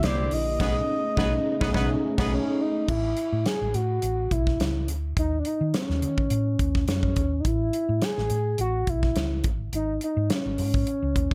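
A glossy, polished mix with light reverb opens this breezy fragment of 1980s jazz-funk pop, where a smooth, sawtooth-edged synth lead with chorus and vibrato sings the melody up front over a round, punchy hollow-body fingered bass and an acoustic drum kit whose punchy kick and snare are framed by gated reverb. In the first moments, a tight, vintage-toned horn section in octave doubling carries a second line until 2.3 seconds, while a mellow tine electric piano and a very quiet, dark, woody string section hold chords and join a band accent from 0.6 seconds. After 2.9 seconds the lead, bass and drums carry on alone through a lightly swung groove.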